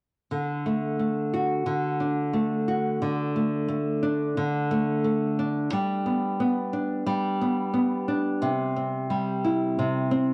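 A fingerpicked nylon-string guitar, small-sounding, up front and warmly acoustic, carries this easy-going, sunny pop fragment with a light sixteenth-note swing, moving from D to G at 5.7 seconds and on to C at 8.4 seconds, all heard through the grain of a cassette home recording with moderate spring reverb and the ambience of a small room.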